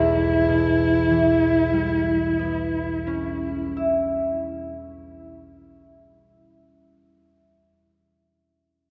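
A wistful, hazy impressionist fragment opens with an expressive bowed cello melody, sung with vibrato and portamento, over a mellow, fingerpicked concert harp ringing out an Em6 harmony in loose rubato, the cello falling away at 3.6 seconds while the harp carries on alone until 7.1 seconds, all bathed in the long, wet reverb of a church or concert hall.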